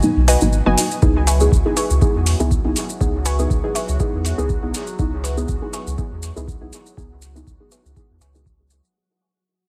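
A heavily compressed, radio-like sound with light reverb frames this cavernous dub techno cut in C# minor at 121 BPM, where a nasal, dark chord stab with dub echo and a round sine sub bass sit up front, a detuned lo-fi pluck warbles through cassette grit, grainy dry maracas and metallic low-passed hats fill out the swung groove, a deep analog kick arrives at 1.0 seconds alongside a resonant bubbling filter texture in the background, and a barely audible tape-like pad appears only briefly as the break gives way to a fade-out over G#m7 to C#m7.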